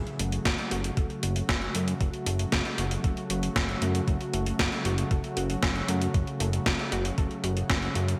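Bright 1980s-style digital production and a lush hall reverb frame this driving, cinematic synthwave excerpt at 116 BPM in F# minor, resting on a single F#m chord as a smooth, detuned sawtooth pad holds sustained chords with chorus and sidechain pumping, a very quiet, round analog pluck traces arpeggios, a fat, thick sawtooth bass with a filter sweep pumps underneath, an up-front, tape-tinged drum machine supplies hi-hat and a gated-reverb snare from 0.1 s, and a thumpy electronic kick joins at 0.5 s.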